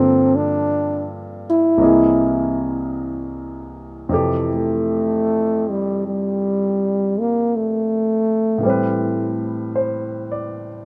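Lightly reverberant and intimate, this tender, slow jazz fragment in F major at 53 BPM swings gently as a mellow, punchy, forceful, close-miked trombone with light vibrato carries the melody up front, taking its solo from 4.1 seconds until it stops at 9.4 seconds, while a polished, present grand piano accompanies through Gm7, C7alt, Fmaj9 and Am7 until 10.8 seconds.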